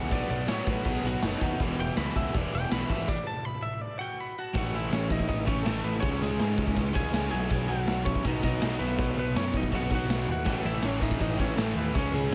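Up front, a saturated, gritty garage drum kit with a punchy kick, medium-tuned snare and crash drives this rebellious, upbeat punk rock excerpt at 162 BPM in a straight 4/4, its sound pumping in a bright stone room with a rolled-off top. A twangy, slightly broken-up lead guitar with tape echo takes a solo over the opening until 4.6 seconds, with a stop falling from 3.1 to 4.6 seconds, while a fuzzed, overdriven picked bass punches underneath. Behind them, a hollow-body overdriven guitar, a very quiet double-tracked fuzz guitar and a raw garage guitar, heard only at the start and again from 10.4 seconds, churn out the riff under light reverb.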